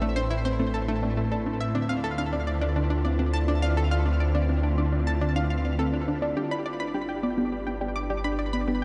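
Ambient, sequencer-driven space music in D dorian at 104 BPM, this hypnotic, mysterious fragment, cut from a longer piece, drifts through Amadd9, Dm7 and G across its 8.8 seconds. A swirling, detuned analog pad sustains the chords under phaser, chorus and shimmer reverb, with a slow attack and long release. Up front, a bright sawtooth-and-square analog pluck with a sub octave and filter sweep plays a riff reaching up to D6, carried by tape echo. Behind it, a soft, full-bodied pluck of triangle and sine tones spins dark arpeggios, colored by cassette tape, tape echo and shimmer reverb. A deep sine sub bass anchors the low end between G1 and D2, while a very quiet, breathy wind-like noise texture hovers on B4. The whole dreamy mix is soaked in a huge reverb with an 8.1-second tail, and its top end is rolled off above 10.9 kHz.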